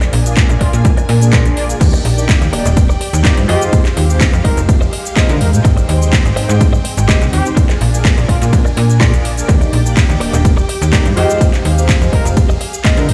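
Filtered disco house at 125 BPM in Eb major, sunny and joyful, where a punchy overdriven electronic kick and a snappy, metallic-attack FM slap bass sit up front, an overdriven house kit of metallic hats, cabasa, handclaps, ride and crash pumps beneath them, a dark clean electric guitar riff carries 12-bit sampler grit, round detuned synth brass with chorus and phaser supplies the accompaniment over Bb7, Ebmaj7, Fm7 and Abmaj7, and lush symphonic strings and a mellow horn-section melody with delay hover in the background, the mix heard through a big sound system in a bare stone room.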